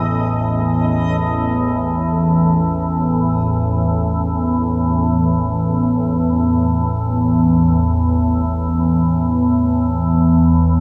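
An organ-like drone sits up front in this desolate, dark ambient fragment, cut from a longer piece and unfolding in free time over about 10.8 seconds. The drone holds low between A1 and E2, its detuned sine tones sounding in unison with a slow attack, long sustain and long release that keep the mood calm and still. An ensemble chorus gives the tone a shimmering thickness, and its own built-in reverb adds to the sense of depth. A moderate spring reverb with a 2.7-second decay surrounds it, set within a small room ambience where a faint mains hum lingers underneath. Tuned to A4 = 442 Hz, the passage rests on a single A5 chord for its whole length.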